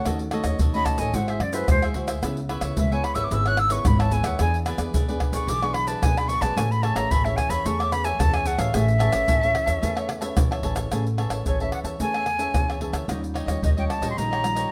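An airy, expressive metal jazz flute with soft-attack vibrato sits up front, entering at 0.7 seconds and soloing until 10.9 seconds over a sunny, playful samba and choro groove at 110 BPM in A major, supported by crisp picked cavaquinho, dark, full-bodied thumb-plucked nylon-string guitar, woody, thumpy pizzicato upright bass, and a close, dry percussion section of tube shaker, tight surdo, pandeiro and tamborim played with soft hands, in a light-reverb cut from a longer piece.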